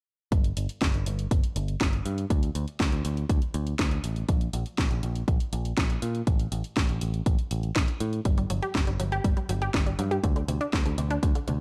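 A straight 4/4 pulse at 121 BPM drives this short, playful and romantic italo disco excerpt, built on a punchy, overdriven electronic kick with studio reverb and a layered house kit of cracking snare and bright hats, while a round, dark picked electric bass with tube saturation sits up front between G1 and Bb2. The harmony moves between chordless passages and D5, and at 8.3 seconds a lush, warbling unison pluck arpeggio enters, its detuned sawtooth tone, noise layer and fast filter attack given a vintage sheen by tape echo. The production feels dark and warm, set in digital ambience.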